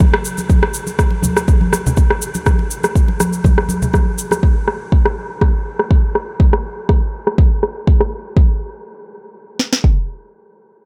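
A warm, spiritual afro house excerpt at 122 BPM in 4/4, with a gentle 16th-note swing, built from an up-front electronic drum kit with a deep kick and sharp snare, joined by a produced electronic rim click that runs until 8.1 seconds. Close, acoustic congas with a bright, thin-skinned, hard-handed tone and a grainy, dry cabasa fill out the groove only until 4.4 seconds, while a filter sweep plays over the drums through the opening section. Light digital reverb gives the mix a small-room sheen before a new section arrives at 8.4 seconds.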